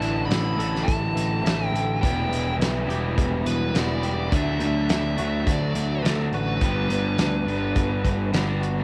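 A small-room home recording on cassette opens this blissful, wistful excerpt of shoegaze-tinged dream pop rock, moving at 105 BPM in a straight 4/4 through Asus4, Em, D and G. A loose indie drum kit with a fat snare, punchy kick and pumping room sound sits under an up-front fuzz bass, while a crunchy overdriven guitar riff carries reverse reverb and an overdriven semi-hollow guitar riff, with its hollow-body tone and lush chorus, hangs in the background. A twangy, compressed clean electric guitar plays arpeggios through ensemble chorus and tape echo, and a biting lead guitar sings a bright, overdriven melody with tape echo until it drops out at 8.3 seconds.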